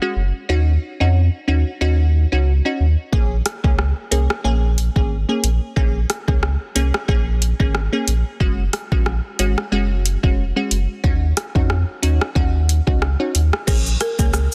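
A round, sine-like sub bass sits up front in this sultry, tough dancehall excerpt, its fast attack and sustained, mellow low end anchoring a 91 BPM groove in 4/4 with a light swing on the sixteenths. A crisp, warbling wavetable chord stab opens the track at 0.0 seconds, its detuned unison voices shaped by a filter pluck and a moving notch for a vintage digital flavour. Electronic afro-pop drums arrive at 3.1 seconds, with a deep kick, metallic hi-hats, rim clicks, shaker and crash cymbal, and a soft-clipped snare adding grit. The harmony moves through Ebm7, Bbm7 and Gbsus2 in Bb minor, tuned to A4 = 436 Hz. At 14.0 seconds a woody, dry marimba struck with medium hard mallets sounds a single rustic Bb4 through a digital delay. The mix sits in a digital ambience with a dense, heavily limited modern master.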